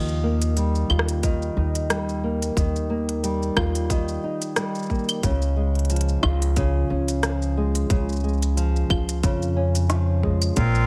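Folktronica with a playful, pastoral mood, moving at 90 BPM in 4/4 with a gentle 16th-note swing, this short excerpt cut from a longer piece sits in a small room ambience. A fingerpicked nylon-string guitar plays dark, up-front arpeggios from Bb2 to F4 through a tape echo, while a pizzicato upright bass with gut strings adds a woody, thumpy low end. An organic electronic drum kit brings claves, rim click, shaker and smooth hi-hats with studio reverb, and a tight electronic kick drum joins at 1.2 seconds, also with studio reverb. The harmony moves from Ebadd9 to Db at 5.2 seconds. A reedy single-reed accordion enters only at 10.6 seconds with clear sustained chords in dry tuning.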